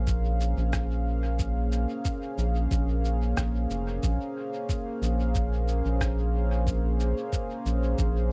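Both drum parts enter at 0.1 seconds, setting a straight 4/4 pulse at 91 BPM. The electronic kick drum is compressed, pitched down and thumpy, with a muffled, tape-softened sampler character, while a quieter electronic cabasa and rim click share that dusky texture and trail into dub echo. This ambient dub passage, cut from a longer piece in Bb minor and tuned to A4 = 441 Hz, rests on a single Bbm9 chord. Up front, a round analog bass mixes square and sine tones with wave-folding, giving a deep, evolving low end with a fast attack and sustained notes from F1 to Bb1. Above it, a smooth, mellow analog pad of sawtooth and triangle layers with a sub octave holds sustained chords through a slow attack and long release, colored by chorus and cassette tape. The home cassette recording is dry, yet the mood feels spacious and deep.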